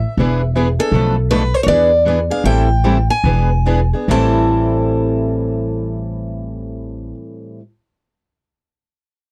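Acoustic string swing in the jazz manouche tradition, this brief, fiery piece in A minor moves at 137 to 161 BPM in 4/4 with a swinging eighth-note feel, and the tempo slows between 0.9 and 4.1 seconds. A picked acoustic archtop guitar carries the melody from the start, its boxy, bright tone sitting up front. Beneath it, a pizzicato upright bass with gut strings gives a woody, thumpy, dark foundation, also placed up front. Two picked steel-string acoustic guitars supply the accompaniment from 0.2 seconds. One has a bright auditorium character and sits forward, and the other is a darker, concert-style guitar whose finger squeaks come through. The harmony cycles through E7, Bm7b5 and Am7 before a second section opens on Am7 at 4.1 seconds, all caught in a dry, close 1970s-style studio sound with light reverb.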